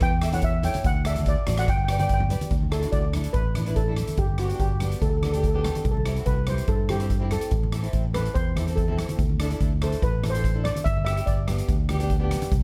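Lightly reverberant, this bouncy, festive calypso clip in G major at 144 BPM sets a shimmering, mellow steel pan melody with slapback echo over a double-tracked, fingerpicked flamenco guitar, a punchy fingered electric bass, an airy, polished street-band drum kit placed up front with a boomy kick, hi-hat and rim click, and very quiet, bright congas that join at 0.3 s, while the pan takes a solo from 2.5 s as the chords move from Dsus2 through Gadd9, C and Am back to G.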